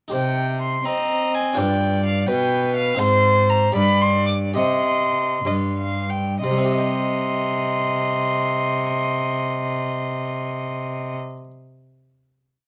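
A solemn, flowing baroque-style sonata movement in C minor and a rubato 6/8 opens with a reedy gut-string violin singing the melody up front over a close, round harpsichord's rolled chords and a walking cello bass, a second period-style violin joining at 0.9 s with a counter-melody that answers at phrase ends, the pulse slowing from 2.3 s before a sustained final chord at 6.4 s, all heard through light reverb and the worn, warbling pitch drift of old cassette tape.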